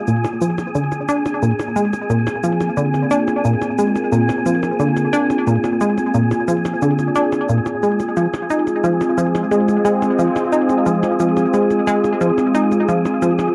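Ambient, sequencer-driven space music at 89 BPM in 4/4 with a straight feel, this passage is cut from a longer piece and carries an expansive, hypnotic mood. A punchy, funky analog bass sits up front from 0.1 seconds, its sawtooth and pulse-wave tones given a fast-attack filter pluck that decays into tape echo as the riff moves between Bb2 and Eb4. Alongside it, a bright, detuned sawtooth pad sustains chords with a slow attack, filter swell and long release, treated with chorus. Higher up, a dark, breathy wind-like noise layer built on sine tones sustains with its own reverb. Overdriven cabasa and electronic percussion blips, run through cassette tape and tape echo, sit low in the mix. The harmony rests on Bbsus2 before turning to Fm at 8.2 seconds, all placed in a wet small room on a home cassette recording.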